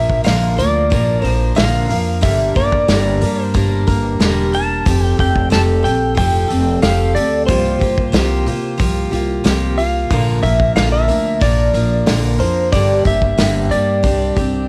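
A straight 4/4 groove comes from an unplugged drum kit played with bundle sticks, its punchy kick, medium-tuned snare and hi-hat sitting in a small room, while a growly pizzicato upright bass with steel strings adds woody low end. A bright, up-front dreadnought acoustic guitar picks through the chords, and a dark, compressed clean lap steel carries the melody with slide and volume swells, both parts taking on a cassette-tape colour. This warm, open-road excerpt of folk rock and heartland rock has the intimate feel of a home cassette recording, moving from Bb through Gm, Fadd9 and C7sus4 before closing on Csus2.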